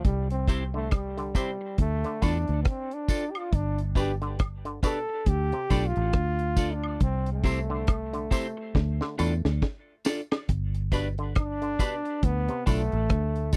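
A clear, up-front trombone with dub echo solos from the start over a round, foam-muted fingered electric bass and a dark, dry reggae drum kit with a high-tuned snare and tight kick, setting a hypnotic, serious roots reggae groove at 69 BPM in D dorian, joined at 0.5 seconds by a clean, picked electric guitar with dub echo, a bright, twangy auto-wah clav playing overdriven arpeggios, and a soft tambourine and woodblock, with a drum fill at 8.7 seconds closing the trombone solo before the passage moves on in this dry, close 1970s-style studio sound cut from a longer piece.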